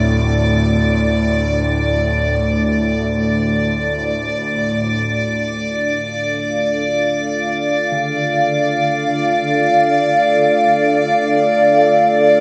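A deep, wave-folded analog pad carries sustained chords from 5.9 s in this desolate, ominous dark ambient drone in free time and D minor, where a nasal, string-like bowed drone holds the low register until 4.9 s, a crystalline icy glass pad with ring modulation and chorus hangs on a high D throughout, and a very quiet bronze metallophone rings out brief shimmering arpeggios at the start before fading back in from 7.9 s, all bathed in a huge, wet reverb in this cut from a longer piece.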